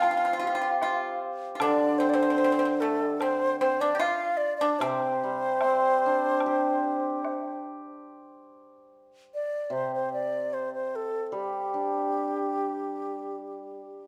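A reedy, airy bamboo xiao carries the melody up front, its end-blown tone shaded with vibrato and crisp tonguing in this graceful, festive Chinese traditional chamber piece. The music moves in a rubato 4/4 at around 74 BPM in the C zhi mode, cut from a longer work. Beside it, a bright pipa played with fingerpicks adds a percussive second line, while a hammered dulcimer supplies shimmering, ringing accompaniment, and a dry woodblock sits in the background. The pipa and woodblock stop at about 7.6 and 7.4 seconds, leaving the xiao and dulcimer to carry the second section, the dulcimer ending at about 13.7 seconds and the xiao closing at 14.1. A moderate recital-hall reverb gives the ensemble a natural sense of space.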